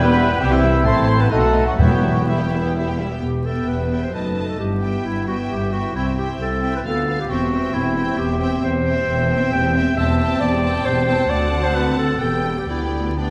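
Violins carry a graceful, cheerful melody in E minor from the first instant, their lush vibrato sound set close against the full orchestra in this quick classical-period movement in 3/4, moving at roughly 121-138 BPM with a rubato feel. A second violin line with a soft attack, a distant, roomy clarinet and a mellow, airy flute weave secondary lines, while the oboe, the bassoon and the viola section fill in quietly behind them. Dark French horns hold sustained chords under warm trumpet stabs, and the cellos, using portamento, join the double basses on the bass line. Timpani with medium mallets sound from 1.8 to 2.5 s, and the flute and trumpets fall away at 2.8 s, while the oboe and bassoon drop out just after. From there the strings, clarinet and horns continue through a gently shifting harmony that returns to E minor near the end of this cut from a longer work, set in a reverberant concert hall with a layer of vinyl crackle.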